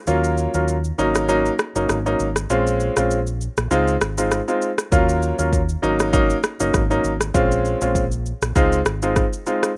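Smooth and mellow, this afrobeats excerpt opens with a break through its first 4.9 seconds, a clear, present grand piano up front with plate reverb carrying a lightly swung cycle of Ebm7, Ab7sus4, Bbm7 and Dbmaj7 chords. Beneath it, a dark, round, punchy fingered electric bass with an amped tone sits low, while an electronic, produced afro-pop kit, tape-warm and up front, supplies a deep kick, rim click and shaker. The rough home-demo mix carries a light overall reverb, and the piano rings on until 9.7 seconds.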